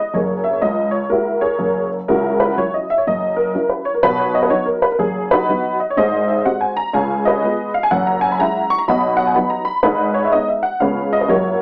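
Jazz stride piano in a swung 4/4, playful and exuberant, carried by a solo honky-tonk upright piano that sounds detuned, jangly and woody up front across a span from F#1 to C#6, its chords moving from F#9 through B, G#7 and C#7 within a moderate club reverb, all heard through worn, warbling old cassette tape with pitch drift and a small-speaker sound, in an 11.6-second cut from a longer piece.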